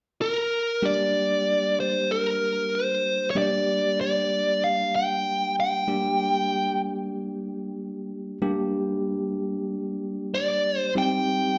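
A lightly swung 4/4 at 95 BPM carries this soulful, brooding minor blues in G, cut from a longer piece. A smooth overdriven lead guitar with slapback echo sings the melody up front from 0.2 seconds, and a bell-like tine electric piano joins with clean, bright accompaniment at 0.8 seconds, holding on G minor before shifting to C minor at 11.0 seconds. The sound is that of a live gig heard through the venue's PA, with light club reverb and a dulled top end.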